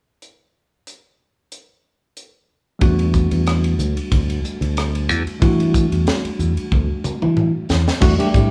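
This slick, funky electric jazz fusion excerpt opens with a tight funk drum kit playing alone from 0.2 s, its high-tuned snare and punchy kick sitting up front alongside hi-hat, ride, crash, rim clicks and toms. The groove moves at 92 BPM in 4/4, with a light swing on the sixteenth notes. At 2.8 s a fingered electric bass and a tine electric piano join over an E minor eleventh chord. The bass is bright, direct and growly, sitting forward in the mix, while the electric piano comps cleanly in a middle register through its built-in speakers. From 6.7 s the drums play a fill, and at 7.7 s the harmony drops away. A moderate large-studio reverb gives the sense of a band playing live together in one room.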